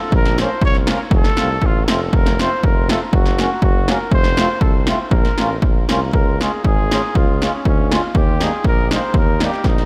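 A punchy analog drum machine sits up front in this bouncy, jolly alpine dance-band excerpt, its overdriven kick and snare carrying the character of a large room and closing with a fill at 9.6 seconds. Over a rubato 2/4 feel at 120 BPM in Bb harmonic minor, a mellow trumpet with light vibrato and tape echo plays the classical-style melody, while a soft-attacked tuba anchors the bass. In the background, a reedy accordion with slow beating adds accompaniment as the music shifts to Db major at 6.1 seconds, all within light small-room ambience.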